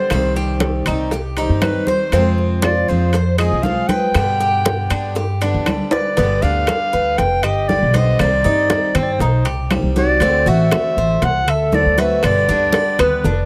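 Closely miked and detailed with light reverb, this sultry Cuban son and guajira excerpt features a breathy, subtoned jazz clarinet with light vibrato up front over a thumpy, gut-strung pizzicato upright bass, a bright picked steel-string acoustic guitar, metallic double-strung tres arpeggios, background bongos, woody saturated claves and ringing congas, plus metal-shelled timbales, with drum fills from 5.2 to 6.2 seconds and at 13.2 seconds.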